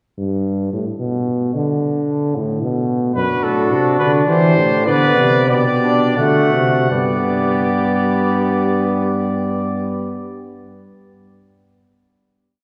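Set back in a resonant church with a long, wet reverb, this brief, stately and joyful classical canzona for brass ensemble in G major moves in 3/4 between 78 and 112 BPM. A mellow bass trombone with light vibrato and a soft attack opens alone at 0.2 s. Flugelhorn, a brilliant, vintage-toned trombone and a clear trumpet carrying the melody join around 3.1 s, each weaving one line of imitative counterpoint as the tempo slows toward a G major final chord at 6.9 s.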